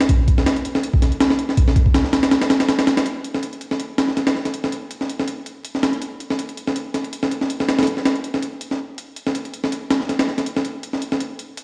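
Frenetic and raw, this drum and bass fragment is cut from a longer piece and rests entirely on a breakbeat sampler-style drum kit playing hi-hat, kick drum and snare drum in 4/4 with a light swing on the sixteenths. The kit sits up front, sounding compressed and gritty at its natural pitch, with a thumpy kick and a high-tuned snare. The opening 3.1 seconds arrive as a drop before the music moves into a new section that runs to 11.6 seconds. The drums carry studio reverb, and the whole recording sits in a moderate digital room reverb of 1.2 seconds. It sounds as if played on a big sound system in a bare stone room, with vinyl crackle over the top.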